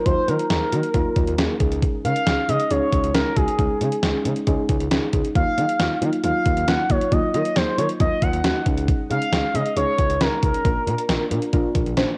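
The detuned 8-bit drum machine sets a straight 4/4 pulse at 136 BPM, its thumpy kick, medium-tuned snare and hi-hat sitting up front with a tape-softened, sampler-style character, as if re-recorded in a small room. This short synth-pop excerpt in Eb minor feels nocturnal and melancholic, moving through Ebmadd9 and Dbsus2 before landing on Bb. A smooth gliding bass of sawtooth and triangle waves, wave-folded and saturated, carries portamento and vibrato between Bb1 and Eb3. Muted, felt-like keys built from triangle and sawtooth with a noise layer and filter sweep supply dark, intimate, decaying chords, colored by chorus and cassette tape. Above them, an expressive, mellow lead sings the melody between Ab4 and Gb5 from 0.0 to 11.3 s, up front in the mix, shaped by a moving notch, vibrato, chorus, cassette tape and analog delay. Moderate spring reverb and digital ambience surround the home cassette recording.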